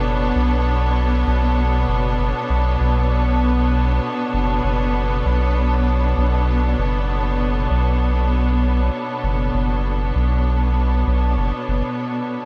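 Deep and spacious, this ambient dub fragment is cut from a longer piece and settles into an unhurried pulse with a slight swing. A rich studio string section holds sustained chords throughout, its bowed ensemble tone smooth and even, touched with light vibrato and a softened top. Underneath, a soft dub sub bass sits low and round, its triangle-and-square-wave tone striking quickly and then sustaining. Both parts sit up front in the mix, the bass a little louder than the strings, and a light studio reverb adds air around them. The bass drops away at 11.8 seconds, leaving the strings to carry the final moments alone until 12.5 seconds.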